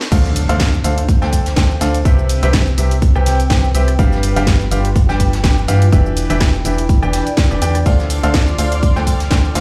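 A clear, natural grand piano riff with digital delay and sidechain pumping leads this bittersweet, energetic piano house drop at 124 BPM in D dorian with a swung 16th-note feel, moving through Dm7, Cmaj7, G7 and Em7 over a hollow, dark, organ-like FM bass, a punchy layered electronic kick, a house drum kit with a cracking snare, shaker and crash, a very quiet, distant brush kit, a warbly, lo-fi tape-like pad in the background, and a very quiet electronic impact that ends at 2.1 seconds. A silky, bright string pad, heard only briefly at the very start, returns at 7.9 seconds as a faint tambourine enters, the whole mix set in a stone room reverb as if played on a big sound system in a bare room.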